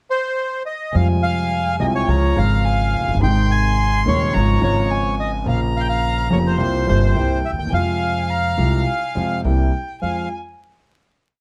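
Close, detailed microphones and little reverb give this short, complete tango an intimate, dry sound, with vinyl crackle running beneath it. The mood is passionate and sultry, and the rubato feel lets the phrasing breathe. A reedy, bright bandoneon opens alone with a pickup, then carries the motif-based melody in period phrases. At 0.9 s the rest of the quartet joins: a single bowed violin with a dark, smooth top adds an expressive counter-melody with vibrato, soft attacks and portamento, while a vintage concert grand with deep bass and audible action noise supplies the accompaniment in the tango rhythm of uneven groups of three and two eighths. The bandoneon and piano both sit up front. An acoustic upright bass, woody and plucked on steel strings, shares that same uneven rhythm before the piece settles onto a closing F minor chord from 10.0 s.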